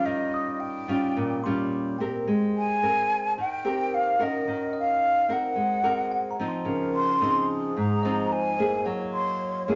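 This bossa nova excerpt moves at 109 BPM in a straight 4/4, smooth and melancholic in mood. A breathy concert flute carries the melody up front, its tone sung with vibrato, tongued notes and lifted highs that make the line expressive. A full-bodied nylon-string guitar, fingerpicked in a classical manner and also up front, supplies the accompaniment through chords such as Eb9, Abmaj9, Ebm7 and Dbmaj9. Behind them, a bell-like tine electric piano adds bright, clean touches in the background. At 6.7 seconds a mellow wooden-headed alto flute joins with a second line, tongued, with vibrato and unsteady. The whole is set in a wet studio reverb with a soft top end, giving the sound a gentle, rounded glow.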